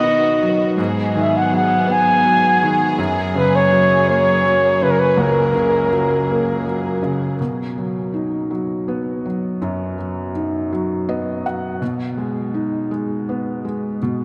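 Set in a slow 6/8 metre with a straight feel, this acoustic folk-pop ballad carries a hopeful, nostalgic mood and is cut from a longer piece. A breathy, whispered flugelhorn sits up front with the melody, played in an intimate jazz style with vibrato and a soft attack, its phrases trailed by tape echo until it stops at 6.7 seconds. Beneath it, a felt-muted upright piano supplies mellow accompaniment with a thin felt tone and audible action noise, and it runs through the whole passage. A chamber string section holds sustained bowed chords, played sul tasto with light vibrato, until 7.4 seconds, after which the piano plays alone. A long cathedral reverb soaks the mix in a dreamy wash.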